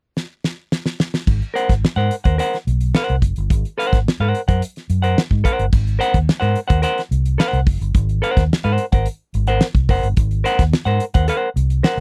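Dry and close, this short funk excerpt has the intimate, deadened sound of a 1970s studio, with barely any reverb around the instruments. It opens with a damped 70s drum kit alone, playing a fill from 0.2 seconds that shows off its fat snare, tight kick, hi-hat and dark crash cymbal. At 1.3 seconds a vintage muted fingered electric bass enters, its foam-muted, round and punchy tone sitting up front between Gb1 and Ab2, and a semi-hollow electric guitar follows at 1.5 seconds with a clean, hollow-body voice in a narrow upper range from Bb4 to Gb5. Set in Ab mixolydian at a straight 108 BPM in 4/4, the band settles onto a single Ab9 chord once the drum introduction gives way. The mood is funky and energetic, with all three instruments placed close and present in the mix through to the cut at 12.0 seconds.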